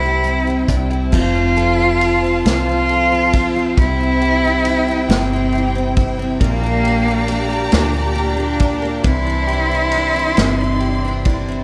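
A slow, swaying 6/8 pulse at 46 BPM carries this romantic pop ballad in F major, tuned to A4 = 435 Hz, as the chords move from C to F, back to C, then Gm/Bb and Cadd9. A rich bowed cello with vibrato sings the melody up front, over a full-bodied, double-tracked steel-string dreadnought with audible finger squeak and lush sustained chords from a clear string section. Clean, compressed electric guitar arpeggios sit in the background, a round fretless bass with ensemble chorus anchors the low end, and a roomy, distant drum kit played with bundle sticks adds dark cymbals and a punchy kick from 0.2 seconds, all inside a small room reverb.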